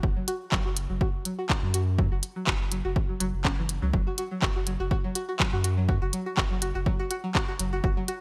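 A punchy, tape-tinged electronic kick sits up front in this cool, hypnotic minimal techno fragment, with a lightly swung groove. A round, deep analog bass pumps beneath it from the start. A twangy, string-like resonator pluck enters at 0.2 seconds with a filter sweep, moving notch, chorus and digital delay, and clicky hats and handclaps arrive at 0.3 seconds, all set in light reverb with a bright 1980s-style digital sheen.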